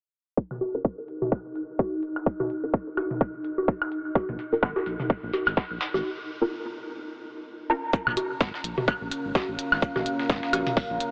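A tight, layered electronic kick opens this cool, quirky minimal techno excerpt at 127 BPM in Bb minor at 0.4 s, joined by overdriven electronic toms, woodblock and bongos with analog delay, clicky hi-hats, a tense, swarming granular drone that pumps with sidechain compression, and a resonant, wave-folded dub chord stab with phaser and chorus under a filter sweep; a gritty sampler-style kit with shaker and snare, a brief grainy shekere and a round, detuned analog bass fill out the groove before a break at 6.0 s, and a moody, deep pad arrives at 9.0 s as the piece settles on B-flat minor, all bathed in huge ambient reverb and a lo-fi AM radio tone.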